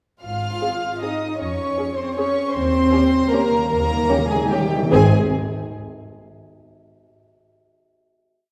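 Heard from further back in a wet scoring-stage reverb, this brief, elegant orchestral ballroom waltz sweeps along with a rubato lilt, its soft-attack violin section floating a pure sul tasto melody while a second violin line doubles the tune at the octave. A warm, intimate cello section also doubles the tune an octave apart, a dark, woody viola section joining at 0.6 seconds with lush after-beat and sustained chords, and a dark chamber double bass section grounds the beats with sustained bass. From 2.5 seconds, timpani struck with hard mallets add an articulate, close and dry fill that rolls toward a final chord arriving at 4.9 seconds.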